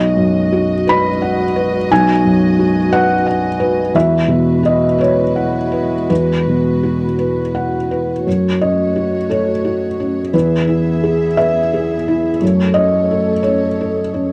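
Neoclassical piano and strings in a melancholic, reflective mood, drifting with rubato at 58 BPM in 6/8 in F# dorian, this short extract from a longer piece sets a dark, mellow felt-muted upright piano up front in the accompaniment, its thick-felt tone carrying audible action noise, over a quieter, intimate chamber string section holding bowed sul tasto chords with light vibrato, moving from G#m7/B and Eadd9 into a second section at 8.3 s that rocks between F#m and E, all caught in a dry, close 1970s-style studio sound with light reverb.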